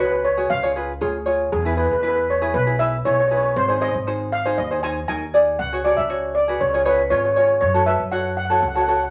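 A straight 4/4 calypso groove at 118 BPM carries this brooding, bittersweet 9.1-second fragment of a longer piece, where a shimmering, airy lead steel pan played with medium rubber sticks sits up front over a light, fingerpicked tenor ukulele and a woody, thumpy pizzicato upright bass on gut strings, all three playing throughout over chords moving from C#sus4 through E and G#, back to C#sus4 and C#, then on to F#m, with wet studio reverb and a layer of vinyl crackle colouring the sound.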